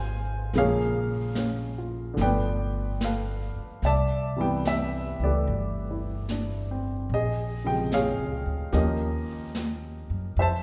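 Late-night and intimate, this slow jazz ballad at 74 BPM swings gently in 4/4 through rich chords such as Dbmaj7, G9 and Cmaj9, and is cut from a longer piece. An up-front baby grand piano with audible action noise and short sustain carries the accompaniment alongside a woody pizzicato upright bass, and at 0.5 s a dark, smooth brush kit enters softly in the background with its rolled-off top. A moderate concert hall reverb lends the whole a natural, roomy glow, with a new passage opening at 3.8 s.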